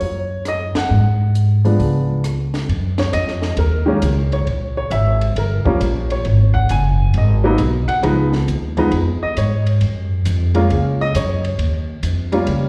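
Smoky and moody, this swung jazz piano trio fragment at 135 BPM pairs an up-front, woody upright piano carrying the melody through plate reverb and slapback echo with a growly pizzicato upright bass on steel strings and a small, dark cocktail drum kit of hi-hat, punchy kick, ride, rim click and high-tuned snare, all heard as a live gig through the venue's PA in a recital-hall space, with a band accent at 0.7 s and a turn at 2.7 s into a passage of Gb6, Abm7 and Gbmaj9 harmony closing on Eb7.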